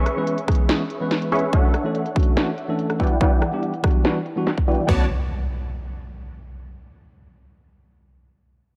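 Light reverb and a digital ambience frame this dreamy, bittersweet future bass excerpt in B minor at 143 BPM with a half-time feel, where a clean, up-front tine electric piano with sidechain pumping and dub echo and a detuned sawtooth supersaw stab riff under a filter sweep move through C#m7, Dmaj7 and Em7 over a filtered trap kit of crisp hats, rim click and sharp snare and an overdriven, punchy electronic kick, before a deep, boomy 808-style bass sounds B1 at 4.9 seconds under Bm7 and an electronic impact takes over from 5.1 seconds.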